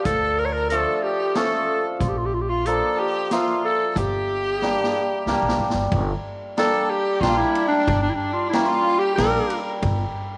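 In a straight 3/4 at 92 BPM, this soulful, festive klezmer excerpt in G dorian sharp4 moves through Dm, Bb and Gm, carried by a woody, thumpy pizzicato upright bass and a small-room street-band drum kit with a boomy kick, dark cymbals and a drum fill from 4.6 to 5.9 seconds that leads into a new section. Up front, a raspy, growling clarinet with light vibrato and tape echo sings the jazz-style solo melody, while a clear, distant bowed violin adds a smooth second line. A bright, shimmering hammered dulcimer rings beside them, the whole set in light reverb and studio ambience.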